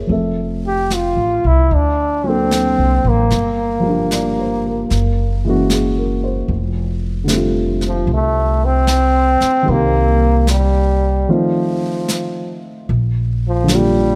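A dark, mellow grand piano and a woody pizzicato upright bass open this intimate, romantic jazz ballad in F major at 75 BPM with a swung 4/4 feel, joined at once by softly brushed snare and hi-hat and at 0.7 seconds by a bright, punchy trombone with light vibrato that carries the melody through a break at 11.3 seconds and takes a forceful solo at 12.9 seconds over lush chords such as Fmaj7, Gb9 and Bb6 in light reverb.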